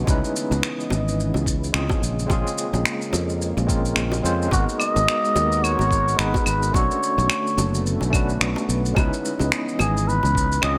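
Sunset chillout at 108 BPM in 4/4, this smooth, warm excerpt from a longer piece rides a gentle sixteenth-note swing through lush minor-ninth harmony, moving from C#m9 through A#m9, G#m9 and Bm9 before returning to C#m9. A barky tine electric piano, lightly overdriven and shimmering with fast tremolo and digital delay through a combo amp, carries the accompaniment over a thick, detuned sawtooth pad that sits in the background with a slow attack, long release and chorus. Underneath, a growly, punchy fretless electric bass holds the low end up front. A gritty, thumpy electronic kick pairs with warm acoustic shaker, finger snaps and claves with a rolled-off top, while very quiet, round, low-tuned bongos add texture. At 4.5 seconds a cup-muted trumpet enters up front as the solo voice, veiled and breathy with light vibrato and a raspy, growling jazz edge, trailed by digital delay. A moderate hall reverb wraps the mix in a relaxed, spacious glow.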